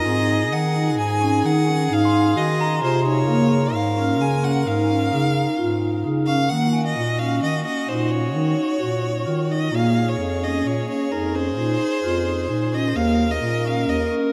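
A clear, focused violin carries the melody from the outset, bowed up front with vibrato, over a dark viola second line played sul tasto with an airy bow, while a smooth-topped bass clarinet holds the bass and a vibraphone with medium mallets spins metallic, ringing arpeggios with slow motor vibrato. This urgent, hypnotic contemporary chamber piece moves at 130 BPM in 7/4 in Eb dorian, its harmony passing from Ab7 through Ebm7 and Bbm7 to Eb7(no3), and a soft, bell-like glockenspiel glimmers in the background from 2.1 to 7.2 seconds. The ensemble sits in a vast, echoing cathedral reverb, in a passage cut from a longer piece.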